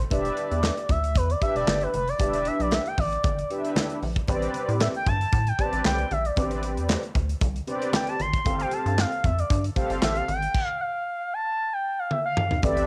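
A straight 4/4 groove drives this danceable, slick slice of early-eighties boogie funk, anchored by an up-front acoustic kit with a tight kick, medium-tuned snare, hi-hat, handclaps, toms and crash, all carrying a cassette-tape grit, while very quiet, low-tuned congas sit close and dry underneath. A rubbery, hollow square-wave bass bounces through the Em7, Am11 and G9sus4 changes beneath round, brassy synth chords with chorus and vibrato, as a smooth, expressive sawtooth lead with chorus and cassette colour plays a solo across the whole excerpt. A stop arrives at 10.5 seconds, and a drum fill follows at 12.1 seconds.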